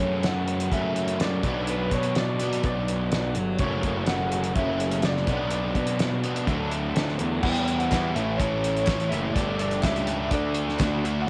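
Opening straight away on a dark, slightly broken-up guitar melody through a small old amp with compression and tape echo, set over a bright thick fuzz guitar riff, an overdriven semi-hollow guitar with analog chorus sitting in the background and a punchy, fuzz-laden picked electric bass, this moody, restless indie rock excerpt at 125 BPM in 4/4 brings in an up-front, cloth-damped, thuddy drum kit with a fat snare, tight kick and dark cymbals at 0.2 s, then adds a very quiet, crisp group handclap at 7.9 s as the chords move from F#m and Bm to Emadd9, A, Gsus2 and D, all with the light reverb and homespun character of a cassette home recording.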